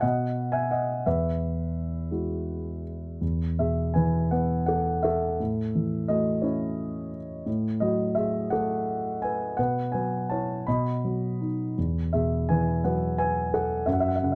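Calm and tender, this brief fragment of lyrical classical piano unfolds in 6/8 with uneven, rubato beats that give it a breathing, unhurried feel. A solo concert grand, dark and mellow with a deep bass and sitting up front, plays throughout, spanning from low E2 up to B5 as its harmony drifts from a B chord through Eadd9, A and F#madd9/A to a Bsus4 and B before settling on Eadd9 at 11.8 seconds. Close, detailed microphones and very little reverb make the instrument sound intimate and near.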